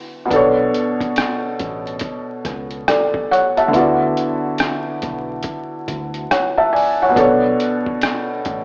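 Melancholic and nostalgic, this swung lo-fi hip hop fragment, cut from a longer piece, opens on an intimate, felt-muted upright piano whose audible action noise sits up front under a cassette-tape and low-pass haze, joined at 0.3 seconds by a dark, round fingered electric bass and a muffled, pitched-down trip hop sampler kit of hi-hat, rim click and thumpy kick, as the harmony drifts from Bm7 to D6 and back amid vinyl crackle, light reverb and a rough, small-speaker home demo sound.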